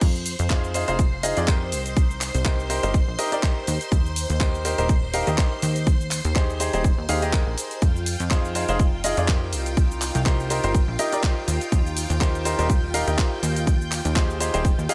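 A punchy electronic kick drives this uplifting, feel-good piano house excerpt at 123 BPM in 4/4, with a gentle 16th-note swing and a layered, tape-touched house kit of handclaps, hi-hat, shaker, ride and crash cymbal re-recorded in a large room. Up front, a plucky analog bass blends sawtooth, pulse and sine tones with tube saturation, its fast attack and decaying filter pluck giving the low end a funky bounce that breathes with sidechain pumping. From 0.5 s, a bright, natural-sounding baby grand piano plays a short-sustain riff in the middle register, sidechained and trailed by delay. Behind it, a vintage string machine voiced as violins holds soft-attack chords with a long release, its shimmering ensemble chorus also breathing with sidechain pumping. In Eb major, the harmony cycles twice through Fm7, Cm7, Eb6 and Abmaj7/Eb over the 14.9-second clip, and the mix stays dry and close, with little reverb.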